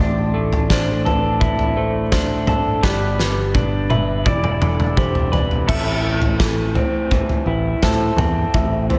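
This brooding, cathartic post-rock passage opens with a slightly broken-up, lo-fi electric guitar picking arpeggios through analog delay and slapback echo, set up front over a direct, amped picked bass, while a twangy pedal steel holds sustained chords with fingerpicked volume swells and a lush chorus in the background. Behind them, a felt-muted upright piano adds soft, intimate arpeggios with audible action noise, sharing the guitar's delay and slapback echo. A loose indie drum kit enters at 0.5 seconds, its fat snare, tight kick, crash and toms sitting up front in a pumping studio room. The harmony moves from Dmadd9/A through G and Em7, and a drum fill runs from 2.8 to 5.7 seconds before the music settles into A minor on an Am chord. At a straight 84 BPM in 4/4, the whole piece carries a big arena sound in a moderate concert hall reverb, and it is cut from a longer work.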